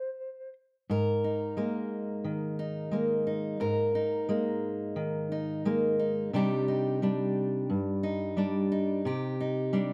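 Yearning and wistful, this folk excerpt opens with a brief clean electric guitar note carrying tremolo, compressed and up front, sounding only from 0.0 to 0.5 s. At 0.9 s a dark, fingerpicked steel-string acoustic guitar enters as the accompaniment, also up front, moving from an Absus2 chord to Cmadd9 at 6.3 s and playing through to 9.9 s. A moderate large-studio reverb gives the guitars a sense of space.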